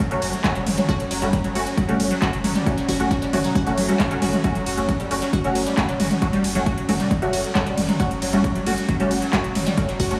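A straight 4/4 pulse at 135 BPM drives this relentless, intense stretch of peak-time techno in F# phrygian, cut from a longer piece and resting on a single F#m chord. An overdriven, heavy electronic kick anchors it, while an up-front, overdriven drum kit adds handclaps, smooth hi-hats, ride cymbal and toms. A saturated sub bass holds F#1 in the background, thick and sustained under a low-pass filter, with sidechain pumping. A juicy, squelchy blip pluck carries the riff between F#3 and F#4, detuned and resonant with a phaser, lush chorus and tape echo, as crisp digital wavetable chord stabs decay through ensemble chorus and their own tape echo. Beneath them an eerie, metallic FM drone sustains from F#3 to C#4, and a huge ambient reverb soaks the mix in a dreamy wash.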